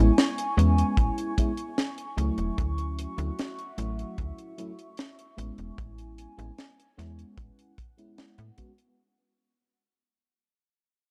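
At 75 BPM in a straight 4/4, a tight funk drum kit with a dry, high-tuned snare and hi-hat enters at 0.2 seconds, joined by an up-front acoustic kick at 1.0 seconds, beneath a slap-like FM bass whose snappy, metallic attack gets a touch of tube saturation. This dreamy, faded vaporwave fragment in A major, cut from a longer piece, floats over Amaj7, Dmaj9 and back to Amaj7. A round, full-bodied FM electric piano with subtle chorus and tape echo carries the accompaniment, while a quieter, warbling lo-fi pad with slow attack, phaser and built-in reverb sustains nostalgic chords above, all fading out across the dark, light-reverb production.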